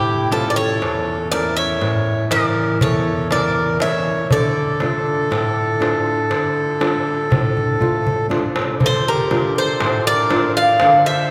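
Greek folk in 9/8 at 120 BPM, this wistful, melancholic excerpt in D harmonic minor features a bright, metallic bouzouki, picked on double strings with some octave-doubled courses, carrying the melody up front, while a reedy, boxy-sounding single-reed accordion adds a clear second line. A fingerpicked classical nylon-string guitar with fresh strings and audible finger squeak supplies accompaniment, moving from A to Dm at 4.3 seconds, and a crisp metal-shell darbuka played with hard hands sits distant in a large room, taking a drum fill from 7.6 seconds into a new section at 8.8 seconds. A long, wet church reverb gives the band the feel of a church or concert hall.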